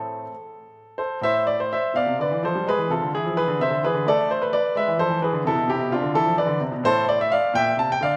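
In an unhurried 6/8 at 85 BPM, the rhythm stretches and yields with rubato, so the dotted-quarter pulse never sits quite even. This short passage, cut from a longer piece, is a baroque-style suite movement in A minor for solo baby grand piano, its mood introspective and solemn. The piano, tuned to A4 = 439 Hz, sounds clear and intimate, placed up front, with the soft mechanical noise of its action audible beneath the long, natural sustain of each tone. Spanning A2 to A5, the harmony moves from A minor through a half-diminished chord and E, then colours the close with a suspended A, a thick D minor voicing over B and a final turn to B-flat at 7.5 seconds. A moderate concert hall reverb gives the instrument a gently resonant space.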